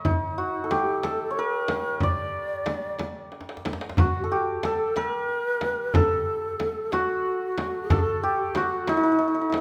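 The santur leads up front, its hammered strings mellow and shimmering as it carries the melody from the start, ringing out in a recital hall of moderate reverb. This short cut from a longer Persian modal ensemble piece moves at 61 BPM in a straight 6/8, with a stately yet festive mood. A breathy low ney enters at 0.1 seconds with a second line, its end-blown reed cane tone tongued and expressive, colored by vibrato. Underneath, a large, deep frame drum sits close and dry up front under hard hands, while the tombak plays further back, its tone compressed and saturated. A drum fill from 3.3 to 4.0 seconds marks the turn into a new section at 4.0 seconds, and the ensemble continues through to 9.6 seconds.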